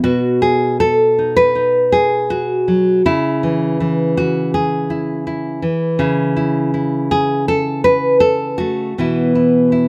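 A lone nylon-string guitar, fingerpicked and up front, carries this peaceful, nostalgic folk passage, its fresh strings giving a deep classical tone across a range from B2 to B4. The playing drifts in a loose rubato over B, C#m and A/C#, moving to Bsus4 at 9.0 seconds. Close, detailed microphones and very little reverb keep the sound intimate in this brief cut from a longer piece.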